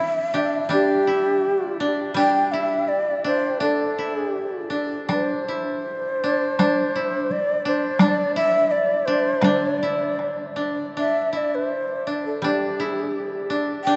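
Austere and calm, this excerpt from a longer piece of Japanese chamber music moves in a free, rubato 2/4 at roughly 76-87 BPM, centred on a D suspended pentatonic scale. An end-blown bamboo shakuhachi carries the melody up front, its breathy tone marked by vibrato, tongued attacks and a chiff at the start of notes. Beneath it, one koto plays a close, narrow second line, its fingerpicked strings mellow and woody, while a second koto sits further back with a lower accompaniment that drops out between 4.3 and 9.4 seconds. A taiko ensemble struck with heavy sticks enters at 5.1 seconds and stays until 10.4 seconds, lending a small-room thud to the middle of the passage. The whole is bathed in a long, wet cathedral reverb that evokes a vast, echoing space, with the upper highs rolled off, and a brief new section begins at 11.0 seconds.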